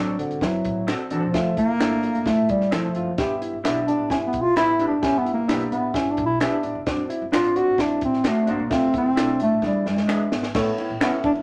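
Uptempo 1960s-style soul in G major at 130 BPM in a straight 4/4, warm and joyful in mood, heard as a short cut from a longer piece. A dark bass clarinet carries the melody up front as a solo with jazz-style vibrato, ranging from D3 to F#4 across the whole passage. Behind it, a mellow upright piano sits in the background with audible action noise and a slightly detuned, woody character, while a clean hollow-body jazz guitar plays a fingered riff and an electric guitar through a small old amp adds slightly broken-up, lo-fi stabs bathed in spring reverb. A pizzicato upright bass with gut strings gives a thumpy low end, and a compact cocktail drum kit enters at 0.2 seconds with dark cymbals, a high-tuned snare and a punchy kick, joined by close, dry finger snaps from 0.9 seconds. The chords move from D7 through Fmaj7 and G6 to D7/F#, and a drum fill from 9.6 seconds leads through E7 to a closing Aadd9. 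A moderate studio reverb gives the ensemble a sense of shared space.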